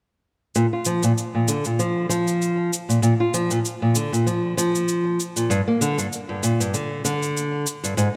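Playful and warm, this short folktronica fragment with a lightly swung sixteenth-note feel sets small, up-front fingerpicked nylon-string guitar arpeggios through a low-pass filter sweep and digital delay, while a dark, smooth cabasa with a rolled-off top sits lower in the mix, both playing from 0.6 to 8.1 seconds inside a moderate concert hall reverb.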